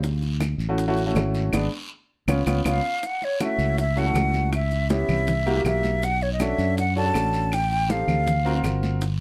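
A breathy, hollow silver concert flute carries the melody up front from 2.7 s, its close-miked tone marked by vibrato and tongued notes in a mellow upper register. The piece is a lively, danceable Afro-Cuban jazz passage in D major at 160 BPM in straight 4/4, cut from a longer piece. A present grand piano with long sustain plays the accompaniment through rich chords such as Dmaj9, F#m7 and Bm9, while a growly, bright fingered electric bass sits up front with a direct, amped sound. In the background, damped, high-tuned congas and round, low-tuned bongos struck with hard hands share the groove with grainy maracas and woody, band-limited claves, and a raspy, saturated guiro adds texture. The band hits an accent at 1.5 s, capped by a short drum fill around the flute's entry, and the mix sits in a dark production with light reverb.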